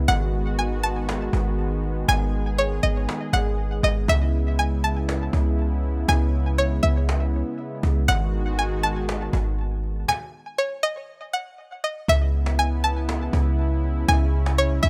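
A smooth, detuned analog pad with a soft chorus shimmer and a deep, boomy 808-style bass open this short cut from a longer piece of atmospheric cloud-rap, laying out a spacious, hazy mood in a half-time feel. A twangy, string-like resonator pluck carries the melody up front, its bright sawtooth tone shaped by a filter sweep, a noise layer, chorus and tape echo. A woody cajon sits low in the mix with hard hand strikes and faint snares, its acoustic sound vintage and band-limited. The harmony moves between G#m7 and C#m7, and a stop arrives at 10.1 s before a new section begins at 12.1 s. The clean, sine-like bass stays mellow and forward, and the rough home-demo mix keeps the room dry.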